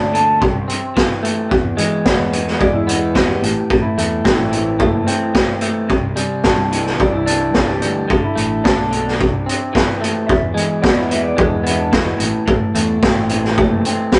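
Moody and cool, this indie rock excerpt moves at 109 BPM in a straight 4/4 in A minor, cut from a longer piece. A clean electric guitar solo carries the melody through a small old amp, its picked, slightly broken-up tone sitting up front with a lo-fi edge, while a second, darker guitar through a similar amp plays a low riff that runs to 14.2 seconds. A fingered electric bass growls underneath with overdriven fuzz, stopping at 13.8 seconds. The raw garage drum kit, with hi-hat, a punchy kick and a medium-tuned snare, sounds saturated and gritty in a small room, its top rolled off and its mix position forward. The chords move from Am/C through E, Am, Cadd9 and D5 before circling back to Am, all captured as a rough rehearsal-room recording with light reverb and a dulled high end.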